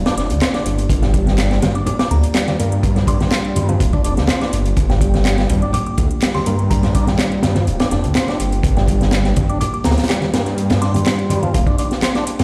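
A crunchy, punchy breakbeat kit with a high-tuned snare drives this funky, gritty breaks cut, layered with an overdriven electronic house kit of handclaps and metallic hats, while soft-handed congas sit in the background from 1.0 s. A thick, menacing detuned saw bass holds the low end up front over a single Gm7 chord. A lightly overdriven tonewheel organ riff with slow rotary swirl and delay joins a moody analog pad carrying 12-bit sampler grit and sidechain pumping, and from 1.9 s a glassy FM bell melody with an AM-radio tint drifts through a large studio reverb.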